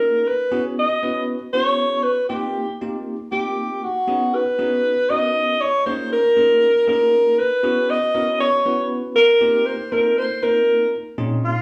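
An alto saxophone and a bell-like tine electric piano open this slick, nocturnal jazz excerpt together, moving in a brisk 7/8 at 236 BPM counted in eighths, with straight time and tuning at A4 = 441 Hz. Up front as the soloist, the saxophone sings the melody in a warm subtone with light vibrato and scooped notes, sounding distant and roomy. Beneath it, the piano's bright, clean, direct chords cycle through suspended ninths such as Eb9sus4, Gb9sus4, F9sus4 and Db9sus4, all captured as a live band in a stone room with a moist one-second reverb.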